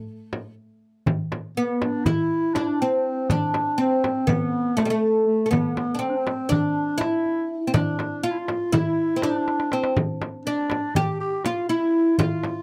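A dry, close 1970s-style studio sound with light reverb frames this melancholic, longing fragment of a Turkish makam ensemble in 9/8 at 243 BPM, counted in eighths. The fretless oud leads from the start with a woody, plectrum-plucked double-string melody from G3 to G4, set up front, while a small, bright frame drum and a crisp metal-shell darbuka played with soft hands carry the pulse, the darbuka entering at 1.1 s. A raspy, growling clarinet with light vibrato and a slapback echo joins at 1.6 s on a jazz-style second line, and a drum fill arrives at 9.5 s.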